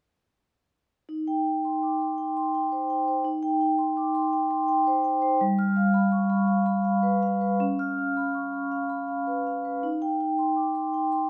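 A mellow, dark, ringing solo vibraphone played with soft mallets and a slow motor vibrato sits up front in this playful fragment of a contemporary classical piece, moving freely in a rubato three-time through Eb6, G7#11 and Db7 harmonies across a range of G3 to F6 from 1.1 to 11.3 seconds, bathed in the wet reverb of a recital hall.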